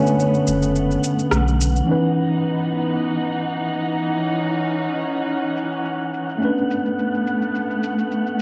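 Cut from a longer piece, this home cassette recording carries a moderate spring reverb and a hazy tape character, setting a smooth sunset chillout groove at 106 BPM in C# minor with a lightly swung feel. A fingerpicked acoustic flamenco guitar sketches the melody only until 1.6 seconds, while a deep, round sub bass sits up front briefly from 0.5 seconds. Beneath them, a worn, slightly out-of-tune tine electric piano moves through filter sweeps, dark con sordino chamber strings hold veiled bowed chords with vibrato, and an airy, breathy wind-like noise layer drifts above, as layered electronic shaker and rim click percussion gains its own filter sweep once the chords shift from Bm9 to C#m9 at 1.9 seconds.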